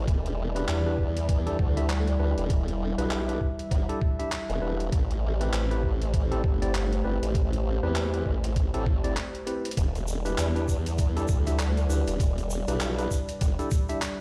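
A dark, moody analog pad and an up-front wobbling formant-filtered bass open this gritty, swaggering glitch hop excerpt, joined by a thumpy, pitched-down electronic kick, a tape-warm sampler-style kit of handclaps and hi-hat in small room ambience, and barky, clean tine electric piano stabs with delay over Em7 and Am7 chords, until a short break at 9.2 seconds and a drum fill at 9.5 seconds bring in a grainy, band-limited egg shaker at 9.8 seconds.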